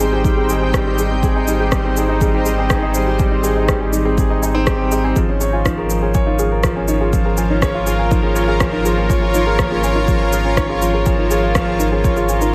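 Piano and strings electronica, hopeful and tender, moving at 122 BPM in a straight 4/4 over a short passage cut from a longer piece. A warm concert grand piano sits up front playing a riff with deep bass, long sustain and digital delay, while a round, sine-like sub bass holds Ab1 under sidechain pumping. A cloudy, blurred granular pad carries sustained chords with its own built-in reverb, and a soft, dark pluck plays arpeggios in the background through chorus, cassette tape coloring, digital delay and pumping. An electronic shaker and rim click run throughout, and an overdriven, layered electronic kick comes in beneath them from 0.2 to 12.1 seconds. The harmony shifts from Abmaj7 to Bbm/Ab at 5.2 seconds, all set in a light reverb.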